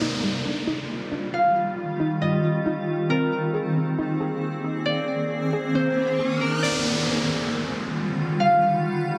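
A half-time 4/4 feel at 136 BPM gives this dreamy, floating hip hop fragment in Eb major a slow, unhurried sway. It is cut from a longer piece. A bright, cloudy granular pad sits up front, holding evolving, blurred chords in its own reverb, moving from Ebmaj9 to Bb9sus4 and back. Over it, a fingerpicked concert harp carries the ringing acoustic melody, softened by a low-pass filter and trailed by digital delay. Underneath, a warbling, lo-fi pluck with a dark, dusty, vintage tone plays chorused, delayed arpeggios until 6.6 seconds. Electronic downlifter and riser effects run throughout, with a riser building from 5.7 seconds into the second section, all within a dense, heavily limited modern master and light reverb.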